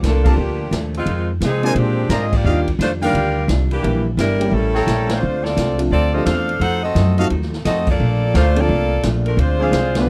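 A brisk swing at 173 BPM in Bb major drives this joyful big-band excerpt, with a woody, thumpy upright bass up front and a roomy, distant drum kit with a punchy kick riding underneath, while a clean hollow-body electric guitar sits in the background. A bright, tight saxophone section carries the melody with light vibrato, a clear trumpet section punctuates with stabs, and an intimate grand piano with audible action noise fills in the harmony over a jazzy progression that opens on Bbmaj7. The trombone section slips in only at 10.0 seconds, just as the cut ends after a final band accent, all in a dry sound.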